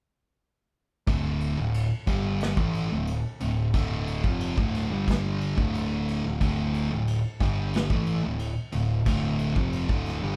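Hypnotic and ominous, this stoner and doom metal excerpt moves at 90 BPM in D minor, with a band playing live in one room under light reverb from 1.1 seconds. Two thick, fuzzed-out electric guitars play the riff, one up front and the other sitting in the background, over a bright, overdriven picked bass growling low and an up-front vintage brush drum kit with dark cymbals, a medium-tuned snare and a tight kick. The chords move from Dm to G5 at 4.9 seconds and back to Dm at 5.6 seconds.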